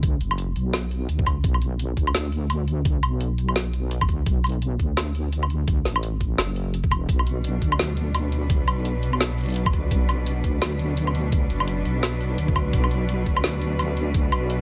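A half-time drum and bass groove at 170 BPM in 4/4 with a swung sixteenth feel drives this dark, heavy passage in B minor. It is cut from a longer piece and held on a single B minor chord. A gritty, thumpy, pitched-down electronic kick and an up-front kit of woody snare, metallic hi-hats and woodblock run alongside a deep, soft wobble bass with chorus and tube saturation. At 7.1 seconds a bright, distant symphonic cello section enters with sustained bowed chords, lightly vibratoed and pumping against the sidechain, all in a dry, close-sounding mix.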